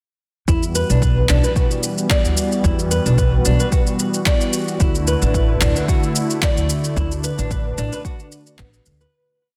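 A deep, tape-warm electronic kick and a layered shaker-and-handclap beat drive a lightly swung 16th-note groove at 111 BPM in 4/4, with a pizzicato upright bass playing a woody, dub-style line and a background udu first entering at 1.3 s. This earthy, hypnotic organic downtempo piece in E minor is built over a smooth, warbling analog pad with lush chorus and sidechain pumping, shifting from Em9 to D69 at 4.8 s. A dark, fingerpicked flamenco guitar repeats a 16-step arpeggio pattern with vintage sampler grit and delay, all in a small, lightly reverberant room with a dense modern master before the fade-out begins at 6.2 s.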